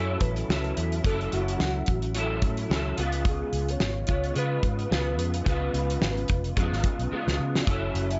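A mellow, lonely stretch of bedroom-tinged indie pop in F# minor at 109 BPM with a light 16th-note swing, where a soft, octave-layered synth lead carries the melody with chorus and analog delay. Beneath it sit a slightly broken-up electric guitar through a small old amp, treated with chorus and vibrato, and a dark, foam-muted fingered bass. A loose acoustic drum kit with a fat snare and tight kick comes in up front at 0.2 seconds and plays a fill from 7.1 to 7.7 seconds, as the chords move from F#m7 to C#7 and back, all held in light reverb with a rolled-off top end in this short excerpt from a longer piece.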